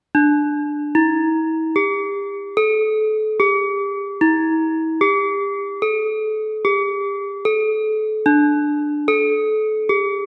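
A gamelan-type bronze metallophone carries the melody from start to finish in this short, shimmering gamelan excerpt, sitting up front in the mix. Struck with a horn mallet, its tone is metallic and bright, each bronze note ringing clearly between D4 and a slightly flat A4. The tempo is an unhurried 74 BPM in a straight 4/4, giving the line a calm, serene pace. A wet reverb with a two-second tail surrounds the instrument, lending it the spacious sound of a scoring stage. The passage runs for about 10 seconds and is cut from a longer piece.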